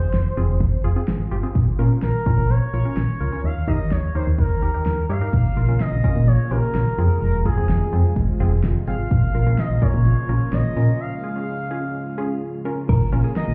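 A straight 4/4 synth-pop groove, driving and nocturnal, rides on a layered electronic pop drum kit with a fat snare and bright hats and a round, dark, up-front FM bass, beneath a lush detuned sawtooth pluck and a smooth, expressive portamento lead with vibrato, chorus and delay; a shimmering, retro pulse-width pad joins at 5.3 seconds, a break arrives at 11.0 seconds, and a clean, picked electric guitar slips in at 12.9 seconds, with the whole excerpt sounding muffled as if heard through a wall, bathed in club reverb.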